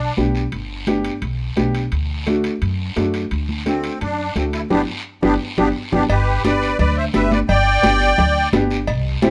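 A reedy, shimmering musette accordion carries the melody from 3.7 s in this joyful, festive cumbia excerpt at 172 BPM in G major, set over a woody pizzicato upright bass, a dark, mellow upright piano with audible action noise, a raspy guiro, and bright, high-tuned congas and ringing timbales and cowbell sitting in the background, with a drum fill and band accent from 4.7 to 6.1 s and light reverb.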